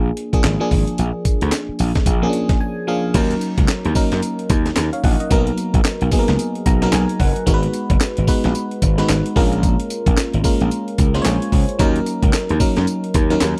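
Slick and confident, this new jack swing R&B groove rides at 111 BPM in 4/4 with a 16th-note swing, centered in E-flat minor and cut from a longer piece. A sampler-style breakbeat kit, compressed and pitched up with a tape-warm grain, enters at 0.2 seconds, pairing a thumpy kick and high-tuned snare with hi-hat, handclaps, tambourine and crash cymbal. Beneath it, an overdriven slap bass sits up front, bright, punchy and gritty with a direct, amped edge. A glassy FM electric piano carries the harmony with a bell-like, fast attack, a noise layer and a chorus shimmer, dropping in short fills such as the one at 2.3 seconds, where a brief break opens before the second section begins at 3.1 seconds. The changes move from Bb7 to Ebm7, Bmaj7, Abm7 and Bbm7 before returning to Ebm7, all captured in a dry, close studio sound with a 1970s character.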